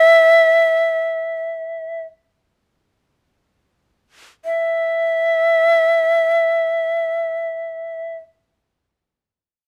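In free time that slows through the first 4.5 seconds, this austere, calm fragment of Japanese chamber music, cut from a longer piece, features a solo end-blown bamboo shakuhachi playing from 0.0 to 8.2 seconds, its breathy, bright tone marked by a crisp, chiffy attack and vibrato, heard up front through close, detailed microphones in a dry, intimate sound.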